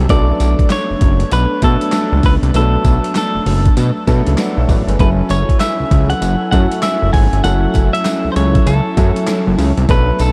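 A swung, bouncy new jack swing groove drives this punchy R&B snippet. It is built on a gritty, compressed sampler-style drum kit, with a thumpy kick, snare, hi-hat, tambourine and handclaps re-recorded in a large room, sitting up front beside a fat, saturated, detuned sawtooth bass. An open baby grand piano and a brassy, warbling vintage pad with chorus in the background hold the Bm7 to F#m7 change, while a clean, scooped electric guitar carries the melody through harmonic tremolo and delay, and from 5.3 seconds a crisp group handclap joins, barely audible, under light reverb.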